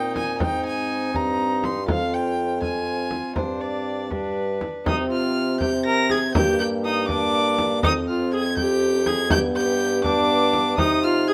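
A renaissance-style consort dance opens at once with violin, viola, trombone and bassoon together, with a deep, close and dry frame drum joining at 0.2 s. The mood is rustic and solemn, moving in a straight 6/8 at 81 beats per minute counted in dotted quarters, with tuning set slightly low at A4 = 439 Hz. Up front, a single violin carries the melody with a reedy gut-string tone in period style, reaching as high as Bb6, while one viola with light vibrato sings a second line beneath it. A smooth-topped, mellow trombone supplies accompaniment and a bassoon anchors the bass down to F2. The harmony circles through Ab, Fm and G toward a closing Cm, and the same opening phrase is heard twice, the second statement beginning at 4.9 s. A moderate stone-room reverb lends the consort a resonant space, and the passage is cut from a longer piece.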